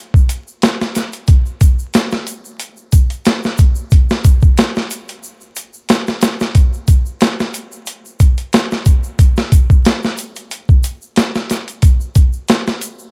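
Dry and dusted with vinyl crackle, this brooding, cinematic trip hop excerpt sways on a lightly swung groove from an up-front, compressed, pitched-down sampler-style kit of hi-hat, thumpy kick and high-tuned snare in a small room, while a gritty edge colours the beat and an acoustic egg shaker with group handclap sits quietly in the background.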